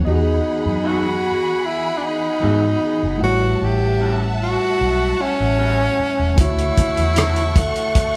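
Romantic and smooth, this lush 1970s-style soul excerpt at 76 BPM sets a breathy tenor saxophone melody with scooped notes up front over a worn, slightly out-of-tune tine electric piano, a dark, foam-muted fingered bass, an expressive bowed violin section with vibrato and a slightly broken-up electric guitar riff in the background, all moving through Emaj9, A13 and Dmaj9 in a big reverberant room before a muffled, lo-fi soul drum kit and very quiet low-tuned congas arrive at 6.4 s.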